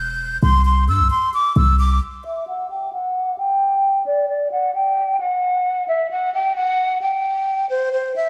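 Bathed in a lush hall reverb, this eerie, brooding half-time hip hop excerpt puts a breathy, hollow jazz flute with vibrato, a low-pass filter and digital delay up front on the melody, alongside a deep, boomy 808-style bass that stops at 2.0 s, after which a filter sweep moves across the flute until 8.3 s.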